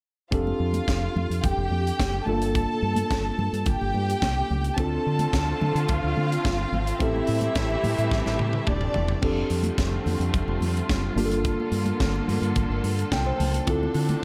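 A round, punchy fingered electric bass anchors this joyful disco excerpt at 108 BPM in F major. It is backed by a tight funk drum kit with a high-tuned snare and gated reverb, damped congas in the background, and a worn, slightly out-of-tune tine electric piano with light overdrive that plays a fill at 12.8 seconds. An up-front violin section carries a smooth, bowed second line with vibrato until 9.2 seconds, where a drum fill ends, while a clear, lush string section holds sustained chords from 4.8 seconds, all over a danceable, straight 4/4 groove moving through F69, Gm9, Dm7 and Am7 in a light small-room ambience.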